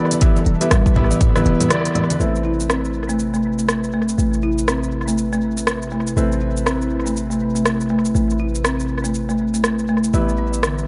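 A detuned sawtooth pad, a woody soft-mallet marimba and a felt-muted upright piano open this earthy afro house excerpt together. The pad holds smooth, chorused chords while the marimba plays rustic arpeggios and the piano adds mellow, intimate stabs with audible action noise. All three pump against a sidechain, and the marimba and piano pass through low-pass filters, the marimba trailing dub echo and the piano tape echo. A layered deep house kit of cabasa, smooth hi-hats, rim clicks and toms arrives almost at once, joined briefly by very quiet, low-tuned hand congas and an up-front, deep electronic kick that drops out by 1.3 seconds, while a boomy sine 808 bass with a fast attack settles in beneath. After a band accent and short break at 1.7 seconds, the harmony moves from Em to Amadd9 as a filter sweep works over the marimba through to the end, all within a swung, echo-heavy mix with light reverb and a soft, rounded top end.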